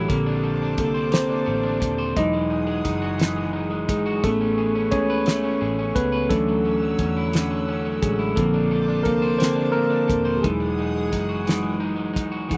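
A slow, straight six-eight pulse sets up this tender R&B passage, cut from a longer piece. A damped 70s drum kit with a fat snare, tight kick and hi-hat sits up front, its dry, rolled-off sound grounding the groove alongside a round, punchy, foam-muted fingered electric bass that stays dark and low. The tine electric piano carries a solo through the whole 12.5 seconds, clean and close through its built-in speakers, moving over lush major-ninth chords from Bbmaj9 through Emaj9, Amaj9 and Dmaj9 before returning. Behind it, an electric guitar at the edge of break-up plays a twangy, picked second line with slapback echo, while a chorused pulse-width pad adds a shimmering, retro layer of sustained chords with a slow attack and long release. The sound is intimate and dry, with little reverb and hardly any sense of a room.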